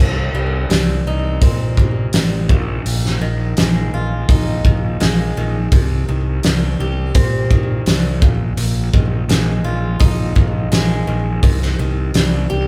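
An acoustic guitar and a growly, fuzz-toned electric bass open this brooding, cathartic alternative rock excerpt in C minor at 84 BPM, the boxy, picked guitar arpeggios carrying a swing-style lilt, audible finger squeak and a slapback echo while the overdriven bass sits up front. A loose indie drum kit comes in at 0.7 seconds with a fat snare, boomy kick and hi-hat in a pumping studio room, as the harmony moves between Cm and Bb7sus4. It sounds like a band playing live in one room, with light reverb.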